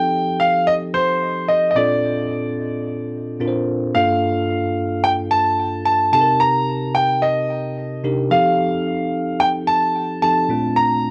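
A bright concert grand piano carries a brilliant, polished melody up front with short sustain over a bell-like tine electric piano's clean accompaniment in this confident, punchy R&B excerpt at 110 BPM with a 16th-note swing, moving through F9, Bbmaj7, Gm7 and Cm7 in a small room with the character of a home cassette recording.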